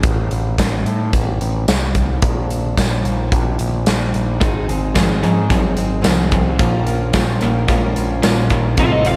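This gritty, driving classic rock excerpt opens with a growling, overdriven picked electric bass and a big acoustic drum kit in a straight 4/4. Both sit up front, the kit bringing a punchy kick and medium-tuned snare along with hi-hat and tambourine. At 4.4 s three guitars enter: a crunchy overdriven electric and a bright distorted electric both play low riffs, very quiet in the mix, while a full-bodied, picked, plugged-in jumbo steel-string acoustic adds accompaniment in the background. The harmony moves from Am to a chordless stretch, then to Ab and Bbm. At 8.8 s a dark, biting overdriven lead guitar jumps to the front with a higher second line just as the clip cuts off. A moderate, lush hall reverb gives the whole a big arena sound.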